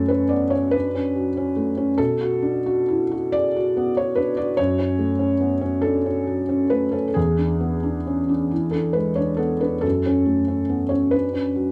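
A dark production with a moderate studio reverb frames this brief excerpt of neoclassical minimalist piano, where a solo felt-muted upright piano, mellow and up front with audible action noise, plays an intimate, wistful passage in F# minor at a slow 46 BPM in a rubato 6/8, moving from F#m through Bm7 and E7 back to F#m over its 11.7 seconds.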